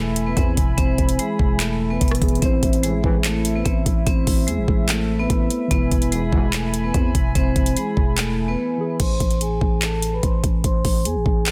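A dense, heavily limited, dry mix sets a melancholic, menacing half-time trap groove, cut from a longer piece, where a bright, ringing vibraphone struck with hard mallets carries the melody up front over a growling, buzzy 808-style bass and a trap kit with a knocking kick, metallic hats, handclaps, rim clicks and crash. Muted, felt-like synth keys with chorus accompany from the background and a hollow, flute-like pad with chorus holds sustained chords, while a classical-style brass ensemble adds brief stabs with light vibrato. The drums drop out just before 9.0 s, when the keys and pad stop and a filter sweep takes over the closing bars.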